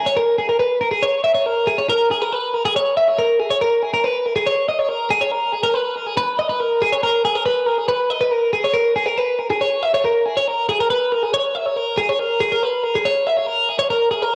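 A home cassette recording with light reverb and a digital ambience frames a playful, intricate rock excerpt in which a bright, twangy, clean twelve-string electric guitar plays solo and up front from 0.0 to 14.3 seconds, compressed and picked in a high register with analog delay trailing its notes.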